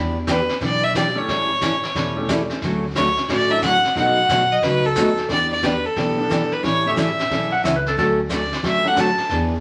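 Swung eighths at 179 BPM drive this playful, down-home country and western swing cut in D major, where a bright, full-bodied picked acoustic guitar and a thumpy, woody pizzicato upright bass with gut strings open the track, a nasal, earthy bowed fiddle with light vibrato carries the melody up front, a vintage brush kit with a fat snare and punchy kick sits in a small room, a clear upright piano with short sustain stays in the background from 1.2 s, and a dark, clean slide lap steel played with fingerpicks steps forward briefly at 7.5 s, set over an Em7–A7–Dmaj7–B7 progression with studio reverb and vinyl crackle.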